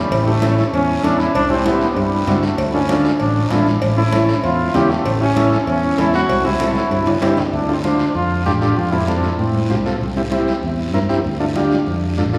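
This cumbia excerpt is passionate and fiery, moving at a brisk 194 BPM in a straight 4/4 and settling into D minor once its second section arrives at 7.5 s. A brilliant, close-miked trombone takes the solo up front with pop-style vibrato over a vintage, reedy combo organ that is overdriven and carries a light vibrato as accompaniment. Underneath, a fingered electric bass sits dark, round and punchy in the foreground, while congas ring high-tuned with hard hands in the background and a close, raspy guiro adds acoustic scrape throughout. Very quiet metal-shell cowbell and timbales sound dry until a drum fill at 6.8 s, then drop out at the section change. The trombone stops at 9.7 s, leaving organ, bass and hand percussion to carry the piece in a church-like room with a long, wet reverb tail.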